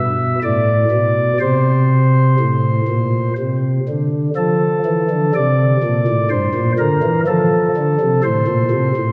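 A pipe organ on soft flute stops opens the passage alone, playing a reverent, serene chorale-style piece in F major. The music moves at a slow 61 BPM in 3/4 with a straight feel, and the organ carries the whole 9.1 seconds by itself, ranging from G2 up to E5. Its voicing has a baroque character, with a gentle chiff at the start of each pipe's speech and a warm tone that sits up front in the sound. The harmony moves from a rootless G through A minor and Csus2 to F, then passes through C7 over G before settling back on F. A wet church reverb with a 2.7-second decay surrounds the organ, giving it a spacious, devotional glow, and the passage is cut from a longer piece.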